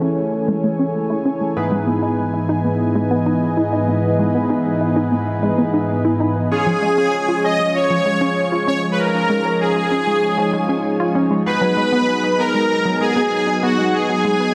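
A driving, nostalgic synthwave passage at 97 BPM opens on a smooth, detuned analog pad holding sustained chords up front, bright chorused pluck arpeggios with cassette-tape grit and tape echo under a filter sweep, and glossy, pulse-width-modulated polysynth stabs with their own filter sweep and echo. At 6.5 seconds, as the harmony moves from Amaj7 and Emaj7/G# to C# and then B6, a soft supersaw carries the melody up front with delay, joined by a faint, shimmering string-machine violin line high above. A lush hall reverb with a touch of small-room ambience surrounds this fragment of a longer piece.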